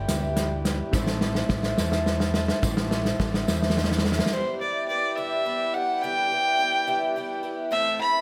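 This brief excerpt of anthemic, nostalgic indie folk in a straight 6/8 opens with a building arrangement: a bright, shimmering twelve-string acoustic guitar picks octave-doubled accompaniment with audible finger squeak, over a mellow, very quiet upright piano and a round, amped electric bass. A natural country drum kit sits up front with a punchy kick and medium-tuned snare, playing a fill through the build, while a jingly tambourine stays close but in the background. Behind them, a brass ensemble holds sustained chords in a classical style with light vibrato, as the harmony moves from G6 to A minor. Around 4.3 seconds the drums, bass, piano and tambourine drop away, and a single woody fiddle takes the melody up front, bowed sul tasto with a smooth top and a digital delay. The guitar and brass carry on beneath it to the end, all set in a moderate large studio reverb.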